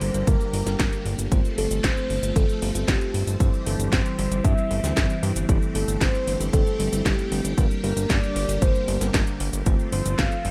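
A punchy, up-front electronic kick drives this nostalgic, melodramatic italo disco excerpt in a straight 4/4, entering at 0.3 s and stopping at 10.3 s. Beside it, a fat, detuned sawtooth analog bass sits prominently in the mix. A house drum kit adds a cracking snare, metallic hi-hats, cabasa and handclaps, and both drum parts carry a tape-warm, layered sheen and studio reverb. Above them, a soft octave-layered synth lead carries the melody with a round, full-bodied, dark tone, colored by chorus, phaser, vibrato, cassette tape and tape echo. A swirling, vintage string machine holds sustained chords through ensemble chorus and phaser, and a bell-like, clean tine electric piano plays stabs in the background. The harmony moves through Gm, F/G, C/G and Am7/G, and the overall sound is dry.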